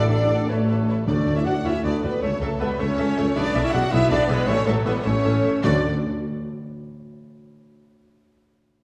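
A dark French horn section holds sustained chords at the heart of this soaring, heroic cinematic fragment in D major, moving in a 6/8 lilt at 105 BPM while a dark, lush violin section carries the melody. Around them sit a warm second violin line, focused violas, woody cellos and a smooth double bass section with a roomy tuba, plus a bright clarinet, a pure wooden flute and a cor anglais as quiet inner voices, delicate harp arpeggios that ring on to 6.8 seconds, and mellow trumpet stabs that stop at 1.1 seconds. Hard-mallet timpani strike close and dry at the opening and again at 5.6 seconds, while a wet scoring-stage reverb places the orchestra further back in the room as the chords move from Aadd9 through D, A/C#, E/B and A to a closing D.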